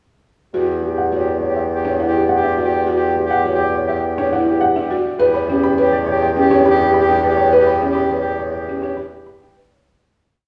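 Urgent yet meditative, this short minimalist classical piece moves at 103 BPM in a straight 4/4, built on repeated short cells in E dorian. A dark baby grand piano carries the melody with an intimate, vintage tone, its action noise audible, while a buzzing marimba struck with soft mallets circles through woody, round arpeggios. A soprano saxophone holds the second line up front with pulsing notes that swell and fade, and a bassoon anchors the bass with long, warm notes and a light vibrato. The harmony rests on Em9 from 0.5 seconds before shifting to G/E at 5.2 seconds. The ensemble sits further back in a reverberant scoring stage, and the whole piece fades out from 7.5 seconds to its close.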